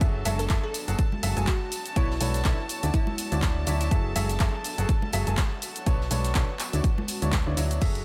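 Energetic, soulful piano house drop cut from a longer piece, where a clear, woody upright piano riff with lush chorus and analog delay rides over a punchy, round FM bass, a layered electronic kick up front, a tape-warm analog drum machine with crash, handclaps, hi-hat and shaker, a very quiet soft-mallet kit with ride and snare, and ringing tambourine and congas in the background, while a rich, bowed chamber string section sustains chords, a blurred granular cloud pad drifts behind, both pumping with the bass and piano, and a glassy wavetable pluck adds a crystalline melody from 0.4 to 3.9 seconds over F#m9, Bm9 and Dmaj9 chords.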